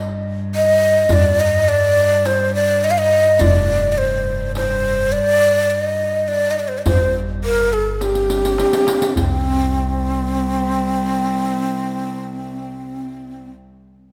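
A close, rich cello section opens the recording with a bowed drone of gut-string tone in period style, setting a soulful, melancholic Arabic maqam mood in G bayati at 104 BPM in a straight 10/8. A deep darbuka with a clay shell and natural skin joins almost at once from a distance, and the riq adds bright jingles struck with hard hands. Up front, a breathy end-blown ney carries the melody with vibrato, tongued notes, lifted highs and a slightly unsteady, human feel, while a woody, dark upright bass plays thumpy pizzicato beneath it. A drum fill arrives at 8.0 seconds, and the darbuka and riq then fall away at 9.7 seconds, leaving the ney, cello drone and bass to carry the closing passage. A moderate concert hall reverb gives the ensemble a spacious glow, and the clip is cut from a longer piece.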